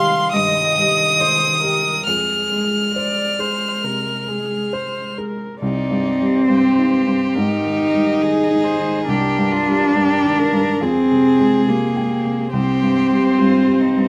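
Close, intimate and lightly reverberant, this fragment of longing, fragile neoclassical music drifts in a rubato 4/4 as a rich, airy-bowed solo violin carries the melody over an up-front, dark cello second line with vibrato, a smooth-topped viola accompanying in soft sul tasto, and a worn, woody upright piano whose audible action noise and slight detuning give it a boxy, short-sustained character.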